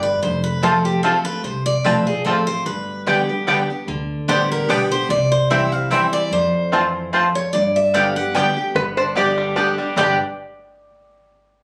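A swung 3/4 at 148 BPM drives this rustic bluegrass fragment in G mixolydian, with the harmony moving through F, G and C. A bright, up-front dreadnought guitar carries the melody with plate reverb over a second warm, full-bodied picked guitar, while a woody, thumpy upright bass sits beneath them. From 0.6 s a twangy banjo joins the melody in the background and a round, double-strung mandolin adds stabs, before a nasal, metallic slide resonator enters at 8.8 s with a second line, all captured on a phone in a club room.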